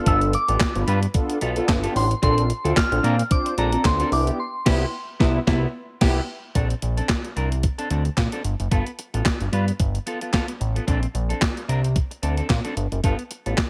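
A mellow, detuned synth brass chord on G9 opens this smooth, danceable early-eighties boogie funk excerpt at 111 BPM in 4/4, with a light swing on the sixteenths. Almost at once a soft, pure FM synth bell carries the melody high above, warbling through chorus, phaser and slapback echo, while a clean, dark electric guitar plays a fingered riff with subtle chorus. Underneath, a fat, thick analog bass built from sawtooth and square waves sits up front beside a crisp 8-bit drum machine, whose thumpy kick, medium-tuned snare, handclaps, hi-hat and crash carry gated reverb. The harmony moves through G9, Bbmaj9 and Cmaj7, and from about 4.4 seconds the band plays an accent, during which the brass and bell fall away by about 6.2 seconds. Guitar, bass and drums then cycle between Bbmaj9 and G9 until the cut ends at 13.7 seconds, in a dry, close overall sound.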